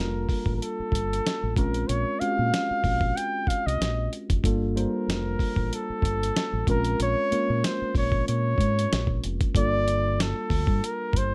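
R&B with a neo-soul lean, this smooth, introspective excerpt sits at 94 BPM in G minor with a light sixteenth-note swing, cut from a longer piece and moving between Gm9 and Bbm9 chords. An up-front flugelhorn carries the melody with a soft attack, vibrato and scooped jazz-style notes, set in slapback echo and plate reverb, over a worn, slightly out-of-tune tine electric piano lightly overdriven through a combo amp and a dark, round, punchy fingered dub bass. A gritty, compressed sampler-style drum kit with a thumpy kick, medium-tuned snare, hi-hat and a tape-warm character joins at 0.3 seconds, all in a light reverb.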